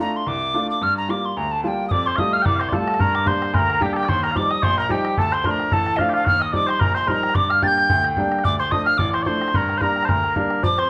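A swung 4/4 reel at 220 BPM in G minor drives this dark, wild Celtic folk excerpt, where a hollow wooden whistle with vibrato and a soft attack carries the melody up front over a brilliant baby grand piano accompaniment, and at 1.9 seconds sweet small bagpipes join with a continuous second line alongside a damped, tight bodhran, all sounding like a band playing live together in a large studio room with moderate reverb.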